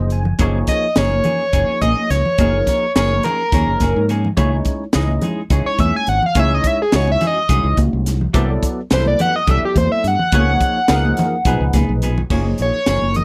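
Funky and bright, this electric jazz fusion piece drives along in 7/8 at 212 BPM, counted in eighths, with a straight feel. A bell-like tine electric piano opens at 0.0 seconds with a short fill, then comps through the harmony with an ensemble chorus. The fingered electric bass sits up front with a warm, direct tone beside a crisp fusion kit whose high-tuned snare, punchy kick, hi-hat and crash ring in a small, pumping room. Soft-handed, thick-skinned congas stay in the background with a vintage, band-limited color, while a clean, dark, compressed electric guitar adds picked stabs with a subtle chorus. From 0.7 seconds an overdriven synth lead takes the melody, a gritty, screaming, guitar-like sawtooth and pulse tone with vibrato, distortion and slapback echo. The harmony moves through Gb69, Dbmadd9, C69 and Db9 before landing on Gbmaj9, and the sound stays dry throughout this excerpt, which is cut from a longer piece.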